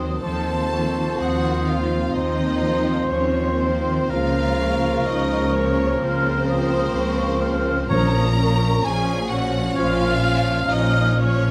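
Up front, a dark double bass section with soft attack and portamento anchors this elegiac, melancholic slow romantic movement for symphony orchestra, cut from a longer piece. A distant cello section shares the bass line, and a lush, vibrato-rich violin section carries the melody over a rubato 4/4 pulse, while a second violin section, a pure straight-toned flute section and a clear, close-miked solo oboe trace second lines. A focused viola section, a mellow vintage bassoon and roomy French horns supply accompaniment and sustained chords, and timpani with medium mallets enter briefly at 7.9 s, with the orchestra sitting in a moderate scoring-stage reverb.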